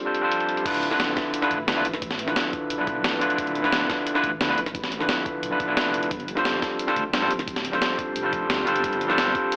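Liquid drum and bass at 176 BPM in D dorian, soulful and dreamy, cut from a longer piece and heard through an AM radio sound with a moderate digital room ambience. An overdriven tine electric piano sits up front from the start, bright and barky through a combo amp with tape echo, while a very quiet, airy breathy pad holds sustained chords beneath it, its detuned layers softened by chorus and a moving notch. A gritty breakbeat sampler-style kit enters at 0.1 s, its medium-tuned snare up front and its hats, cymbals and snare dulled by low-pass filtering and studio reverb. At 0.7 s the drop arrives as a thumpy electronic kick joins in the background and a dark, menacing detuned saw bass comes in with an evolving filter swell. The harmony moves from G7sus4 to Dm69, then returns to G7sus4 at 6.1 s.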